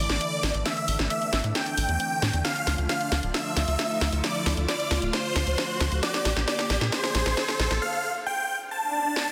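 A huge, bright supersaw lead carries the melody up front, with phaser and digital delay, in this euphoric, emotional uplifting trance build-up at 134 BPM in D minor, moving through Asus4, Dm and Bb. Beneath it, a lush, airy detuned pad with chorus, phaser and vintage 12-bit sampler grit joins a tight, punchy sequencer bass with a plucky filtered attack, and both stop at 7.8 seconds, while an overdriven techno kit with a cracking snare and filtered hi-hats plays fills. An electronic riser sits in the background before a swell arrives at 8.7 seconds, and the cut is bathed in a long ambient reverb and a dense, heavily limited modern master.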